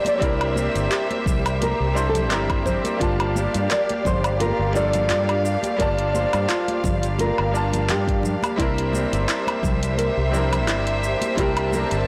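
A relaxed 86 BPM groove in 4/4 with a gentle swing on the sixteenths sets up this smooth, wistful sunset chillout cut in G dorian, taken from a longer piece and moving between C7 and Gm7 chords. A deep, layered electronic kick anchors the beat alongside a produced R&B kit of handclaps, warm hats, shaker and woodblock, given grit by overdrive and a small-room re-recording, while compressed, ringing congas with hard hands sit in the background. The fretless electric bass sits up front with tube saturation and ensemble chorus, and a dark, thumb-plucked nylon-string guitar carries the melody with full-bodied tone, audible finger squeak and delay. A bright, brilliant, worn concert grand piano with deep low end accompanies with delay, a rich bowed string section holds smooth, vibrato-laden chords, and a soft, round, detuned synth pluck adds chorused, delayed arpeggios from 0.2 seconds. A moderate scoring-stage reverb of 2.1 seconds surrounds the mix, but the overall recording is blown-out and overdriven, giving the lush arrangement a loud, crunchy edge.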